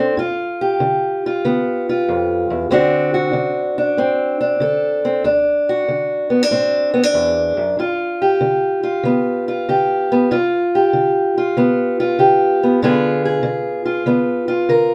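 Swaggering and laid-back, this blues moves at an easy 95 BPM in 4/4, with the eighth notes swung. A lone fingerpicked steel-string acoustic guitar carries the whole passage from 0.0 to 14.9 seconds, ranging from D2 up to Bb4. Its tone is dark and boxy, with a parlour-guitar character, and it sits up front in the mix. The harmony moves from G7 to D7, back to G7, and then to a G#dim7 at 12.8 seconds. The recording has a live, single-room feel, wrapped in a wet studio reverb, and the passage is cut from a longer piece, tuned to A4 = 439 Hz.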